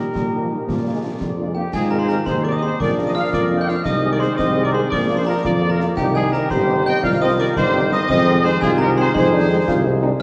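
A rousing, festive military-style march for wind band in 6/8 opens at once, a dark, vintage trumpet section carrying the melody. Above it, a sparkling glockenspiel struck with hard plastic mallets rings out high and dry. A very quiet, airy flute ensemble, a vibrato-rich woodwind section and a euphonium set in the background each trace their own second line. A clear French horn section fills in the accompaniment, the trombones hold sustained chords, and a warm tuba, the loudest part, anchors the bass. Concert snare drum, bass drum and dark clash cymbals come in at 0.2 s and stop at 9.8 s, just before the band. The whole passage, cut from a longer piece, sits in a reverberant concert hall and carries the warble and pitch drift of worn old cassette tape.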